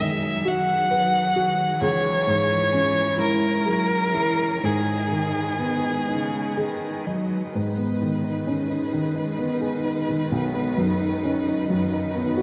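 A dreamy mix steeped in lush hall reverb, with a touch of small-room ambience, frames this brief, melancholic fragment of neoclassical piano and strings, cut from a longer piece. Moving in a lilting 6/8 with uneven, rubato beats, it carries a sense of longing. A single bowed violin sings the melody up front, its tone smooth and even with vibrato, yet set distant by a diffuse ambient delay. Beneath it, a lone cello plays a second line in the background, expressive and gently attacked, sliding between notes with portamento. A woody, natural upright piano with short sustain and a subtle chorus supplies accompaniment near the front, while a soft, organ-like pad of pure, detuned sine and triangle tones with ring modulation holds slow-blooming chords with a long release, coloured by ensemble chorus and its own reverb. The harmony drifts from B to C#m and settles on G#m, then returns to B at 10.3 seconds as the passage ends at 12.4 seconds.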